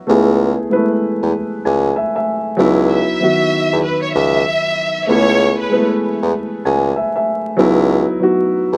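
A dark, woody upright piano, filtered and given a cassette-tape grain, carries this gritty, tough hip hop excerpt at a swung 96 BPM in C# minor. Beneath it a bassoon holds a low bass line with light vibrato, while a studio violin section plays an expressive bowed melody full of vibrato, portamento and digital delay from 2.9 to 5.9 seconds, all over C#m7 and C#m11 chords in a small room with light reverb and vinyl crackle.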